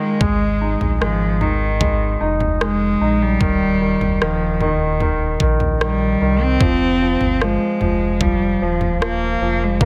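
A straight 4/4 pulse at 75 BPM carries this heartfelt, hopeful pop ballad excerpt, with an electronic, layered drum kit of knocking kick, rim click and toms joining a deep sine-and-triangle sub bass at 0.2 seconds. Up front, a single bowed cello sings the melody with vibrato and a smooth top, while a clear, polished concert grand piano with short sustain accompanies through chords moving from Absus2 to Eb to Fm7. The tuning sits slightly low at A4 = 437 Hz, and a light studio reverb frames the sound.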